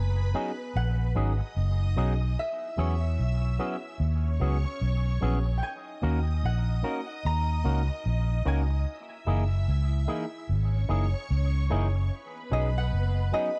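Smooth and romantic, this reggae excerpt moves at an easy 74 BPM in B major, with a swung sixteenth feel and chords drifting from B6 through E69, D#m7 and F#13 before settling back on B6. A dark, round, foam-muted electric bass sits up front and anchors the low end, while a bright, barky tine electric piano, lightly overdriven through a combo amp, fills in the accompaniment from 0.3 seconds. An electric guitar with a clean, picked tone runs through an envelope filter and dub echo to add stabs. Above them, a fingerpicked concert harp carries the ringing acoustic melody, its notes trailed by tape echo, as a lush vintage string machine ensemble with a sawtooth, sub-octave body, slow attack and mellow chorus sustains a second line. Dark digital ambience wraps the production, and the piece is cut from a longer work at about 13.6 seconds.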